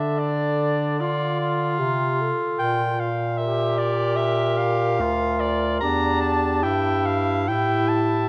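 A mellow, smooth-topped soprano saxophone carries the melody through this solemn, melancholic classical fragment for single-reed quartet in D minor, at a rubato 74 BPM, over a vibrato-tinged alto saxophone second line, a warm, roomy tenor saxophone accompaniment and a clear bass clarinet bass line, the four sounding together for 8.3 seconds in a moderate concert hall reverb as the harmony moves from Dm through Bb and Em7b5 to A5.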